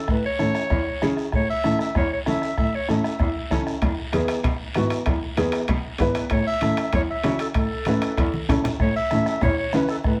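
Sunny and festive, this brisk cumbia excerpt at 193 BPM in A major puts a classical-style clarinet up front on the melody, dropping out for a stretch in the middle. Beneath it sit a rich, bowed cello bass played sul tasto with a soft attack, and a woody, slightly detuned upright piano. Soft-beater bombo, low-tuned congas with a thick skin in the background, and a raspy, vintage guiro keep the pulse, while ringing metal-shell timbales join at 3.8 seconds and play until 8.8 seconds, when a drum fill starting at 8.3 seconds closes out the section. The harmony moves from A to E and back, heard from further back in a room with moderate reverb.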